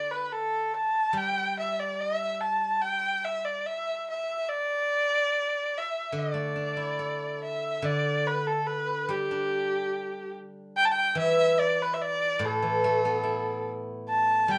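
A rich, nasal erhu carries the melody with light vibrato and portamento, while a ringing, silvery steel-string zither played with fingerpicks accompanies it throughout this pastoral, festive excerpt of Chinese traditional chamber music in D zhi mode, moving in a rubato 2/4 around 72 BPM through moderate studio reverb, with a new section beginning at 7.8 seconds.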